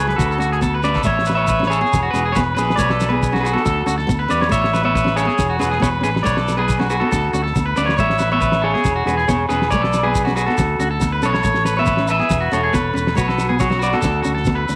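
A lightly reverberant studio sound frames this sunny, danceable highlife guitar band excerpt at 139 BPM in A major, where an up-front, twangy electric guitar on the edge of break-up carries the melody through spring reverb over a second picked guitar's arpeggios with tape echo, a fingerpicked nylon-string guitar in the background, a round fingered electric bass, a dry, dark 70s drum kit with a fat snare and tight kick, grainy shekere and distant ringing agogo bells, all cycling through D, A, Eadd9 and Bsus2.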